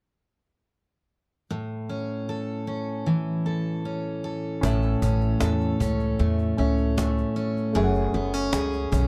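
A picked steel-string acoustic guitar opens at 1.5 seconds, its jumbo body sounding full and up front, with finger squeak audible as it settles on an A major chord. This is easy-going, heartfelt acoustic pop in A major at 77 BPM in a straight 4/4. At 4.6 seconds the arrangement fills out as an intimate upright piano with audible action noise and long sustain, a woody, thumpy pizzicato upright bass on gut strings, and a snappy cajon with snares all join the guitar. The harmony moves to F#madd9 at 7.8 seconds before the fragment, cut from a longer piece, ends at 9.1 seconds. Light reverb and a dark, warm production give the whole a close, unhurried character.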